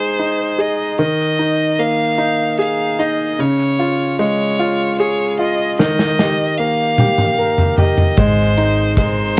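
A bright, intense violin carries the melody up front, its bowed line sung with vibrato by a single player and colored by a cassette-tape grain. This tender, heartfelt six-eight pop ballad moves slowly at 50 BPM. A clear, polished grand piano sits close beside it with long sustain and audible action noise, accompanying through Ab, Ebsus4, Db and Eb before settling on Abadd9. At 5.8 seconds a modern studio drum kit arrives with a fill across kick, snare, toms and ride, sounding dark and smooth with a tight kick and a rolled-off top that also carries the cassette character. At 8.2 seconds a round, foam-muted vintage electric bass holds a low Ab while a full-bodied jumbo steel-string acoustic guitar adds very quiet fingerpicked arpeggios. The home cassette recording is dry and intimate, with little reverb, and this short passage is cut from a longer piece.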